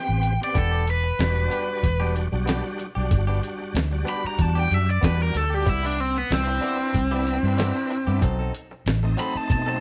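A moderate stone-room reverb surrounds a band playing live together in this mournful, brooding soul blues fragment, cut from a longer piece, with a straight-eighth feel and a light sixteenth-note swing. Up front, a picked, overdriven electric guitar carries the melody beside a dark, round, foam-muted bass, while a muffled, pitched-down sampler-style drum kit adds a thumpy kick, fat snare and hi-hat. Behind them a shouting tonewheel organ with key click, slow rotary speaker, overdrive and chorus vibrato fills out the chords, and a twangy, direct-recorded clean guitar enters at 0.5 seconds with picked stabs over a progression moving from Am7 to Em7, Cmaj7 and B7b9.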